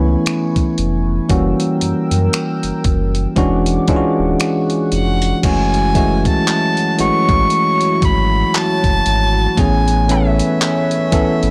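A bell-like tine electric piano opens this dreamy, tender contemporary R&B excerpt at a slow 58 BPM with a 16th-note swing, over a dark, shimmering chorused pulse-width pad with sidechain pumping, a deep sine sub bass, and a gritty, thumpy sampler-style drum kit with finger snaps, handclaps and a soft-clipped snare, before a nasal, vibrato-laden violin with tape echo enters at 4.9 seconds and a faint, crystalline FM synth bell joins at 6.0 seconds, all in a blown-out, overdriven digital ambience.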